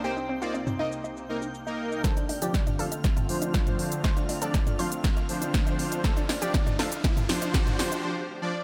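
A bittersweet, expansive progressive house excerpt in a light reverb, where a clean, picked electric guitar melody appears only in the first 1.5 seconds over a morphing, bright wavetable pad, detuned pluck arpeggios, smooth supersaw stabs under a filter sweep, a twinkling granular shimmer, a deep house kit with a punchy snare and dry background bongos, congas and toms, before an up-front punchy kick from 2.0 seconds, a barely audible round bass and a very quiet riser drive a build-up and drum fill into a short break at 8.0 seconds.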